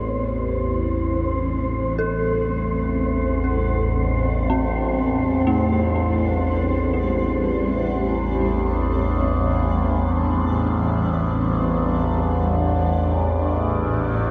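A low drone sits up front from the very start of this unsettling dark ambient fragment, cut from a longer piece. Its wave-folded sawtooth, sine and triangle tones carry moving overtones and a resonant moving notch, thickened with chorus. Alongside it, a cloudy granular pad fades in with blurred, full-bodied sustained chords, while a breathy, wind-like tuned noise layer sits higher and fades out across the whole passage. At 2.0 s an eerie detuned FM bell begins tracing inharmonic arpeggios, its decaying tones coloured by chorus, phaser and delay, until it drops away at 12.6 s. The sound is drenched in a huge, wet reverb with a dull, shaded top end, leaving an ominous, suspended atmosphere.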